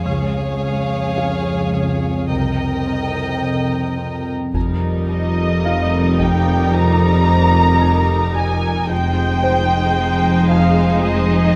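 A veiled, con sordino violin section carries the melody over a dark marimba riff, a second muted violin line, very quiet felt-muted upright piano, a chorused analog drone on F2 in the background, and muted cello and distant double bass sections on the bass, with a distant muted viola section and a brief taiko ensemble entering at 4.5 seconds (the taiko stopping at 6.7) in this tense, eerie suspense film score at 55 BPM, moving from Db through Cm7 and Eb/F to Fm7 inside a wet scoring-stage reverb.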